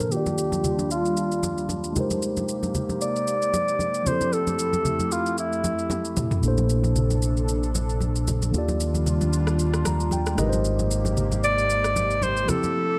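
This short cut from a longer amapiano piece sits in a digital ambience, relaxed and warm in mood, with a lightly swung sixteenth-note feel. A breathy, whispered alto saxophone carries the melody up front. Its intimate tone is softened by a low-pass filter and trailed by digital delay, and it drops out at 6.1 seconds before returning at 11.4 seconds. Beneath it, a mellow, clean tine electric piano plays accompaniment and adds a short fill, while an airy, detuned pad with chorus holds sustained chords as a filter sweep runs across the whole passage. The overdriven, layered electronic drum kit brings rim clicks, shaker and toms, with a fill just before the bass arrives, and close, dry congas played with soft hands add bright hand percussion. At 6.4 seconds a dark, round, punchy fingered electric bass enters, grounding the lush major-ninth chords.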